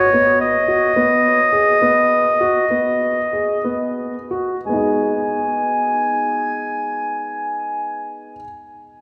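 A clarinet and a grand piano begin together in this short cut from a longer piece of contemporary chamber music in G# minor, with a restless, pensive mood. The piano plays dark, mellow arpeggios in its middle register over a rootless G#m7, its boxy tone, long sustain and audible action noise giving it an intimate presence up front. Above it, the solo clarinet carries the melody in a classical style, its smooth top and warm tone sitting close to the listener. The uneven 9/8 metre moves in eighths at roughly 172-219 BPM, slowing down through the opening passage before a new section arrives at 4.7 seconds on a plain G# minor chord. A cathedral reverb with a long 5.3-second tail surrounds the pair, placing them in a church or concert hall until both fall silent just after 8 seconds.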